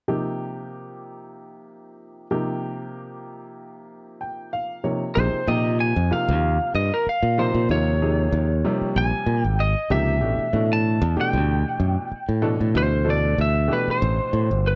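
A clear, worn grand piano opens this driving, nocturnal electric jazz fusion excerpt alone at 95 BPM with a light sixteenth-note swing, voicing an Eb69 chord and playing a fill from 3.9 seconds before a twangy, slightly broken-up lead guitar takes the melody and a growly, punchy fingered bass enters at 5.2 seconds, the harmony moving through Bbm11 to Am11 at 10.2 seconds in a dry, close 1970s-style small-room sound.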